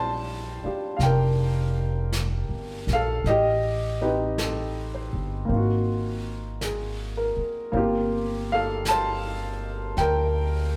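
A tender, romantic jazz ballad opens with clear upright piano and pizzicato upright bass sounding together from the start. The tempo is a slow 54 BPM in 4/4 with a gentle swing on the eighth notes, and the music sits in Bb major. At 1.0 s a jazz drum kit enters, played with brushes on the snare alongside hi-hat, its airy, polished sound sitting softly behind the others. The piano is natural and up front in the mid to upper register, while the steel-strung bass is thumpy and woody, also up front. The harmony drifts through Bb69, Am7b5, Ab13 and Gm11, all set in a moderate stone room with a live, in-one-room feel, and this fragment of a longer piece ends at 10.8 s.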